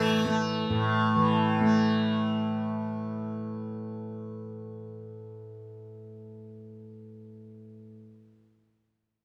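This short excerpt of Indian classical music moves at 151 BPM in a straight 3/4, tuned with A4 at 438 Hz, and carries a meditative, devotional mood. The tanpura sits up front as a mellow, softly plucked drone spanning A2 to A3, its buzzing, shimmering tone sustaining from the start until 8.3 seconds. A plectrum-plucked sitar sounds in the background on A3 only for the first 0.5 seconds, its round, buzzing voice ringing with sympathetic strings. The players share one room, and a moderate studio reverb with a 0.7-second decay gives the sound a gentle sense of space. Cut from a longer piece, the fragment leaves the listener mostly with the steady glow of the drone.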